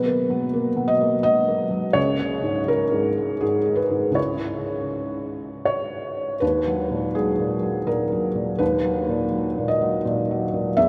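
A felt-muted upright piano plays alone from the start, its soft, mellow tone sitting up front with the audible noise of its action, in this melancholic, wistful neoclassical minimalist passage cut from a longer piece. The playing moves in a loose, rubato 3/4, drifting from B5 to C#m at 2.0 seconds and settling on Bmaj7/D# at 6.4 seconds, spanning the low bass up to the middle treble. A long, wet cathedral reverb surrounds the intimate instrument with the echo of a vast space, so each chord lingers well after it is struck.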